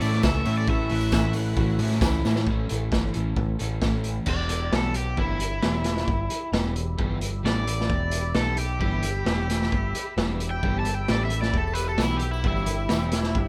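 Indie rock at 132 BPM in E dorian, bittersweet and moody, cut from a longer piece with a rough home-demo sound and little reverb, where a saturated, boomy garage drum kit with dark cymbals and a pumping small room sits up front beside a warm overdriven picked bass. A fuzz guitar riff with analog chorus and slapback echo hangs in the background alongside a very quiet, dark clean guitar riff and a lush, detuned sawtooth pad treated with chorus and phaser, while a faint tine electric piano line and jingly tambourine color the opening until 2.4 seconds, the tambourine returning near the end. After a drum fill at 2.2 seconds, a bright, compressed overdriven guitar with slapback echo takes a solo from 4.3 seconds to the close, as the harmony shifts from A to Em.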